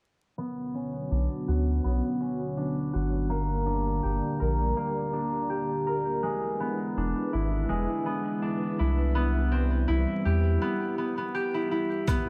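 A dusky, crackling recording with a muffled vinyl haze and light studio reverb opens this melancholic, hypnotic trip hop passage, cut from a longer piece in an unhurried 4/4. From 0.4 seconds a string machine with cellos holds sustained chords, its vintage sawtooth tone dark and full, colored by phaser and ensemble chorus, while a filter sweep moves across both it and the concert harp. The harp, fingerpicked and ringing, plays arpeggios up front, roughened with 12-bit sampler grit, a low-pass filter and delay. A deep, round sub bass with tube saturation enters at 1.1 seconds beneath chords moving from Bmadd9 through Gm and E7 to Cmaj7, and drops out at 10.6 seconds, where a break begins. Only at 12.1 seconds does a pitched-down, overdriven sampler-style kit arrive with a thumpy kick and hi-hat, joined by a very quiet egg shaker.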